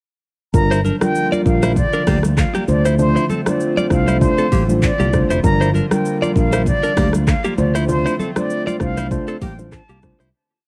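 A hazy, cassette-worn home recording with light reverb opens on a hypnotic, smooth afrobeats groove at 98 BPM in G minor, swinging gently on the sixteenths as it sways between Gm7 and Dm7 before fading out from 7.9 seconds. Up front, an electronic afro-pop kit sets a deep, soft kick against syncopated rim clicks, shaker, handclaps and hi-hat, joined by a round, bouncy fingered bass line, very quiet congas with soft hands, and a mellow tine electric piano playing syncopated chords. Over this, a clean, compressed direct guitar repeats an interlocking figure doubled in sixths, a hollow, flute-like pad enters at 1.0 seconds in the background, and an airy concert flute with vibrato carries a syncopated, expressive hook.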